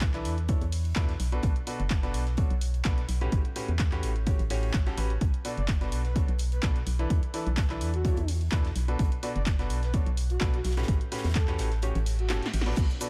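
A swung 4/4 groove at 127 BPM drives this energetic, soulful piano house cut from a longer piece in B minor, built on a punchy, tape-coloured electronic kick sitting up front alongside a punchy analog drum machine supplying handclaps, hi-hat, shaker, snare and crash, with a very quiet acoustic rock kit adding hi-hat and a medium-tuned snare in a big room. Underneath, a hollow, dark, organ-like FM bass with a fast, decaying attack pumps against the kick. A brilliant grand piano carries the riff across chords moving between E7sus4, Bm7 and A13, also pumping and trailed by a diffuse ambient delay. At 5.4 seconds a soft, breathy, flute-like synth lead joins in the background with chorus, vibrato and a diffuse delay of its own. The kick drops out at 11.8 seconds as a reverse cymbal enters at 12.0 seconds, leading into a drum fill and a band accent, all in a dry mix.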